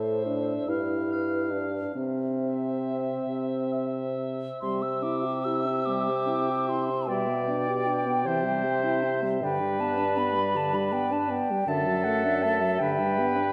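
This is a slow, romantic classical movement for wind quintet, lyrical and tender, cut from a longer piece. It moves in 6/8 at 44-54 BPM on the dotted quarter, with a rubato feel, in C major. A pure, hollow silver flute carries the tongued melody with vibrato, while a clear oboe sings a distant, roomy second line with light vibrato and a soft attack. A mellow clarinet and a warm French horn with light vibrato fill out the accompaniment, and the bassoon sits up front with light vibrato, anchoring the bass. The opening phrase is restated from 4.6 s, with the harmony passing from A minor through G7 to C and later through D/F# to G. The flute ends at 13.3 s, just before the others, and the whole ensemble rests in a dark, wet concert hall reverb.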